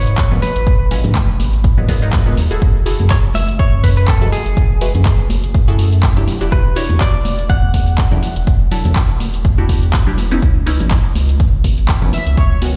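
A swung 4/4 deep house groove is anchored by an up-front, punchy electronic kick and a round, deep analog bass that pumps, while tape-toned handclaps and hi-hat from a drum machine and bright, high-tuned congas played with hard hands sit in the background. The mood is hypnotic and late-night, carried by muted dub chord stabs with a sawtooth filter pluck, phaser, pumping and tape echo that cycle through G#m9, F#m9, Em9 and C#m9. A twangy, direct-recorded clean electric guitar picks out a melody with tape echo until about 9.9 seconds. Near the close, at 12.1 seconds, an airy, dreamy lead with chorus and vibrato briefly appears. The whole mix sounds as if played on a big sound system in a bare room, with a large studio reverb, in a short cut from a longer piece.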